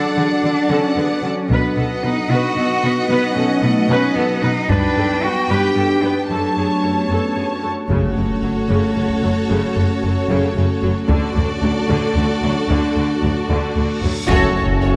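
Bathed in a damp recital-hall reverb, this tense, relentless cut from a hybrid orchestral and electronic film score in 6/8 opens with a solo cello singing an expressive, gliding melody alongside a lush violin section, over a distant viola section, a rich cello section bass and a glassy, ethereal FM pad with chorus and its own reverb, while a taiko ensemble pounds heavy sticks in the background. At 7.9 seconds a huge, bright impact arrives as a focused second violin line and a smooth double bass section join. At 14.3 seconds, after a reverse cymbal, the close gathers mellow French horns, very quiet trombones, a roomy tuba and a deep sine sub bass for a final accent.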